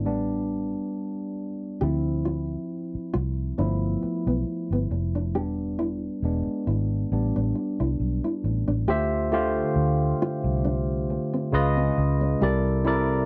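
R&B and neo-soul in D dorian at a relaxed 68 BPM with a lightly swung 16th feel, this soulful, introspective excerpt features a barky, lightly overdriven tine electric piano with lush chorus taking a solo through the first 8.9 seconds over a round, punchy, foam-muted fingered electric bass, while a dark, thumb-plucked nylon-string guitar with audible finger squeak enters at 1.8 seconds as a second line, all captured in a dry, close 1970s-style studio sound that moves through rich extended chords such as Dm9, G13, Dm11 and C#9.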